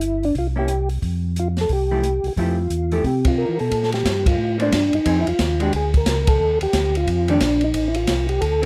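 Soulful and bluesy, this fragment of a soul jazz organ trio swings briskly at 179 BPM in 4/4, moving from F major into Bb major at 3.7 s. A soft, flute-like tonewheel organ with a percussive second-harmonic attack carries the melody through a slow rotary speaker, chorus vibrato and plate reverb, while a round, lightly overdriven tonewheel organ plays the bass, both up front beside an acoustic jazz kit with dark cymbals and a boomy kick in a small room. A clean, picked hollow-body electric guitar enters at 0.6 s with accompaniment, and the band lands three accents together along the way.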